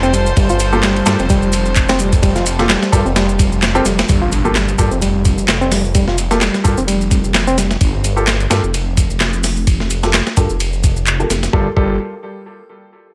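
A funky, raw breakbeat excerpt in G minor at 129 BPM opens with a gut-string chamber section holding sustained chords that pump under sidechain, a reedy electric piano riff shimmering with fast tremolo and tape echo, and a swirling, thick detuned saw bass grinding through phaser and tube saturation. A gritty, compressed sampler-style kit with a thumpy kick sits up front beside layered electronic shaker and handclaps, while a worn baby grand with audible action noise adds filtered stabs. At 4.1 seconds the strings stop as a very quiet impact lands and filter sweeps on the bass and grand piano begin, with the electric piano returning at 11.5 seconds over a Gm9 chord in digital ambience.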